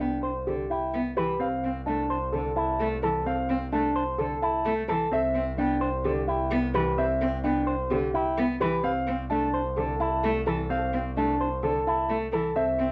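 Heard through worn, warbling cassette tape with light reverb, this bright, propulsive fragment of minimalist classical pattern music cycles between Cmaj7 and a rootless F6/C. A dark, mellow baby grand piano carries the melody with long sustain, while a clean, twangy electric guitar with an envelope filter plays picked arpeggios up front. Beneath them, a single bowed cello adds expressive accompaniment with vibrato and portamento, and a smooth, distant bowed double bass holds a low C.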